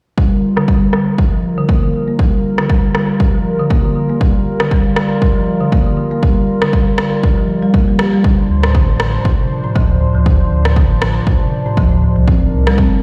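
Earthy and driving, this afro house excerpt moves at 119 BPM in G minor with a 16th-note swing, its chords shifting from Gm7 to Dm7 and then Cm9. A woody, rustic marimba played with soft mallets spins arpeggios through a low-pass filter and tape echo, while a smooth, warbling analog pad holds sustained chords with chorus, both pumping against a punchy, overdriven kick that sits up front beside a filtered rim click, with a filter sweep on the drums throughout. At 8.5 seconds a deep, round sine sub bass enters, all heard in the stone reverb of a bare room on a big sound system.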